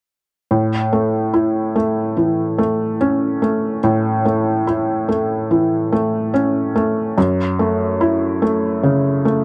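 A dry, close recording in a 1970s studio style sets the scene, touched by light reverb that keeps the sound intimate and up front. This short pop fragment, cut from a longer piece, carries a tender, hopeful mood in a steady, straight four-beat pulse. A lone felt-muted upright piano plays accompaniment from 0.5 to 9.4 seconds, moving through the lower and middle registers with a soft, mellow tone. The thin felt gives each note a muted, hushed quality, and the audible action noise of the instrument adds a homely, human texture. The harmony rests on an A major chord before shifting to F#m7 at 7.2 seconds, lending a gentle wistfulness to the close of the passage.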